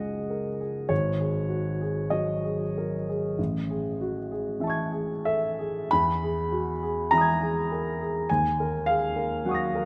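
Serene and dreamy, this 9.9-second excerpt of impressionist classical solo piano drifts in rubato 4/4 at 45-52 BPM, its warm, open baby grand heard up front through close, detailed microphones, its long sustain blooming into a moderate concert hall reverb as it spans Ab1 to Bb6 and glides through Gb69, Absus2, Amaj7, Emaj7 and Ebm9, tuned to A4 = 438 Hz.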